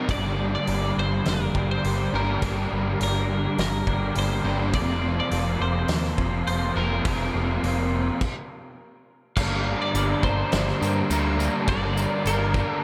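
A straight 4/4 pulse at 104 BPM drives this brooding, hazy shoegaze and dream pop passage in G minor, cut from a longer piece. A loose indie drum kit sits distant and roomy, with a fat snare, punchy kick, dark cymbals and a rolled-off top, while a growling, overdriven picked electric bass holds the low end up front. Two overdriven guitars carry the riff: one crunchy and forward, thickened by ensemble chorus, the other a hollow-body with reverse reverb. Above them a bright, twangy, compressed twelve-string electric guitar plays the melody with subtle chorus and diffuse ambient delay. The harmony moves from Gm to Fsus4, a stop falls at 8.2 seconds, and at 9.4 seconds the music returns to Gm as a jingly tambourine enters for the closing section. A lush hall reverb soaks the whole mix in a dreamy wash.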